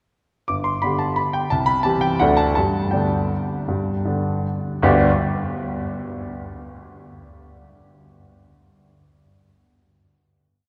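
A clear baby grand piano opens at 0.5 s with a graceful, playful classical waltz in G major and 3/4, its single-line melody set up front over a waltz bass and moving through G, C and D before returning to G. The tempo sits around 152-183 BPM with a rubato feel, and this whole brief piece closes on a final chord at 4.8 s. The playing is clear and present, bathed in the long, wet reverb of a cathedral-like church or concert hall.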